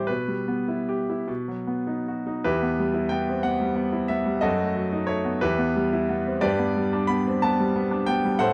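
A brilliant, up-front concert grand piano with a deep bass plays alone across its range from E2 to B5 in this bittersweet, stormy romantic character piece, flowing in a rubato 6/8 through E minor harmonies that turn toward a diminished chord near 4.4 seconds before landing on G at 6.4 seconds, all set in light reverb within a dark production in a brief fragment cut from a longer work.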